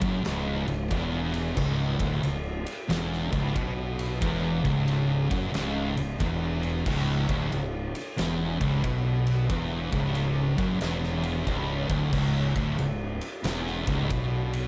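A swung, ominous stoner and doom metal groove at 91 BPM in C# minor opens with three thick fuzz guitars churning low riffs, one of them double-tracked and very quiet, over a growly, bright overdriven fingered bass and an oversized low-tuned drum kit with a punchy kick, fat snare, dark crash and ride cymbals and a gritty, pumping big-room sound, all sitting on a single C#m chord in this 14.7-second cut from a longer piece.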